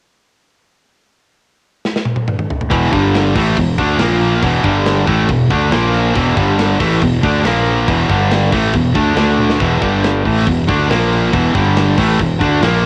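The overdriven electric guitar stands out most, picked and up front as it drives a dark, aggressive heavy metal riff that cycles mainly between E5, G5 and A#5 power chords, with a brief D5 near 9.2 seconds. Beneath it, a high-gain distorted guitar sits in the background playing the riff in the same range, while a very quiet, double-tracked fuzz guitar adds a thick layer of grit. A growly, punchy fuzz bass, fingered and up front, anchors the low end with an overdriven snarl. The tight drum kit, recorded in a big room with bright cymbals, a medium-tuned snare and a tight kick, enters at 1.8 seconds with a fill that leads the band in at 2.7 seconds, and another fill arrives at 9.4 seconds. The whole passage has a light reverb and the character of a home cassette recording, and it is cut from a longer piece.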